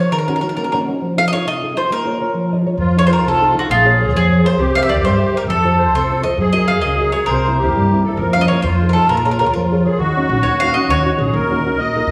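A round, double-strung mandolin carries the melody from the opening moment, picked and up front over a classical nylon-string guitar whose thumb-plucked accompaniment carries the faint squeak of fingers on strings. This passionate, wistful Italian folk serenade moves in a straight 6/8 at 134 BPM, counted in dotted quarters, and sits in Bb minor with harmony that passes through chords such as Ebm7, F7, Gbadd9 and C7. The guitar slips in a short fill at 2.3 seconds, and at 2.8 seconds a reedy, shimmering musette accordion joins with a second line, set a little further back, alongside a woody, growly pizzicato upright bass. The whole ensemble sits in the lingering reverb of a recital hall, giving the intimate playing a resonant, churchlike glow. A new section arrives at 10.0 seconds before this excerpt of a longer piece breaks off.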